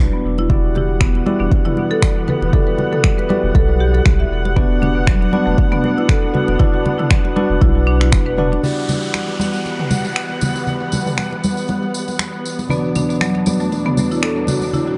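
Echo-soaked and hazy, with a soft small-room ambience and a rounded top end, this afro house cut from a longer piece moves at 118 BPM in E minor with a swung, hypnotic sway and a warm mood. An overdriven, up-front electronic kick and a deep house kit of finger snaps and toms anchor the groove, joined by bright, close congas trailing dub echo, while a round sine sub bass sits heavily beneath. Bell-like electric piano stabs ring out over lush, dark bowed strings with vibrato, and a woody marimba struck with hard mallets spins gritty, sampler-textured arpeggios, with both pulsing under sidechain pumping. At 8.6 seconds the kick has already dropped out and the bass falls away, a filter sweep moves over the electric piano, a jingly tambourine enters, and a downlifter and riser murmur in the background. The marimba returns at 12.7 seconds as the chords move between Em9 and Bm over E.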